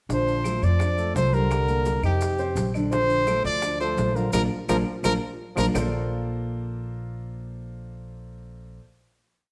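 A lively, sophisticated Afro-Cuban jazz piece in a straight 4/4 at 170 BPM, in Bb major, driven by an up-front pizzicato upright bass playing a woody tumbao that anticipates the chords, while congas with slaps and open strokes sit thick-skinned and distant in the background. Tight, high-tuned bongos ride steady eighths with a hand bell very quietly, grainy maracas shake in the background, and woody claves enter at 0.4 s with a two-bar time line. Over this, a clear, punchy trumpet carries a forceful, motif-based melody up front, shadowed by a dark trombone with light vibrato playing a harmony line mostly in sixths beneath it. A concert grand piano with deep bass lays down a montuno in octaves through the changes from Bbmaj9 to Cm9 and Fsus2. After a band accent from 4.3 s and a drum fill from 4.7 s, the horns and percussion stop by 5.8 s, leaving piano and bass to hold the final chord until 8.8 s, all heard as a live band in one room with a stone-room reverb.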